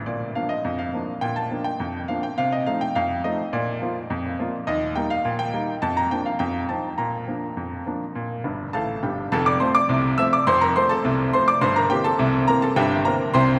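Drenched in a long cathedral reverb, this short cut from a longer playful, lively ragtime piece features a bright, brilliant baby grand piano played solo and up front, spanning deep bass to high treble, with a fill from 8.4 s leading into a new section at 9.3 s that carries on until 13.6 s.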